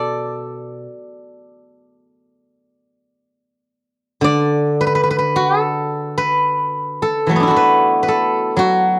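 A dry, close recording with little reverb and a 1970s studio character places a single steel-string zither up front, its ringing, silvery tone caught in intimate detail. This short excerpt is traditional Chinese solo plucked-string music in the D gong mode, pastoral and flowing in mood. The zither is played with fingerpicks and carries the whole piece alone, spanning a range from B2 to D5. The pace hovers around 53-58 BPM in 4/4, though the rubato feel lets the time breathe freely. The passage falls into two parts, with the second beginning at 4.2 seconds and continuing to the cut at 9.0 seconds.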